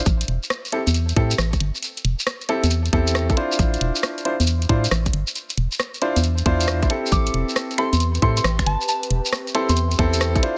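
A hollow, organ-like FM bass sits up front in this soulful, skippy two-step garage excerpt at 136 BPM in A minor, joined by a tight, overdriven electronic kick, an overdriven garage kit of finger snaps, hi-hat and rim click, and a grainy, close shekere, all swung on the 16ths. A clear concert grand piano adds stabs with tape echo from 0.7 seconds over chords moving from Am7 to Dm9 and back. At 7.1 seconds a soft, pure synth bell melody with chorus and tape echo arrives alongside a smooth, warbling vintage pad that pumps in the background, all in a dry, close sound.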